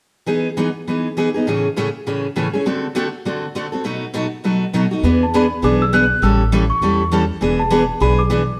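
Playful and swinging, this brisk 202 BPM gypsy-jazz excerpt in E major opens with an up-front, woody picked steel-string acoustic guitar comping alone through Emaj7, Amaj7, D7 and B7 until a woody, plucked upright bass and a bell-like, sweet celesta melody enter around 5 seconds as the harmony shifts to E mixolydian, all set in a live stone-room reverb.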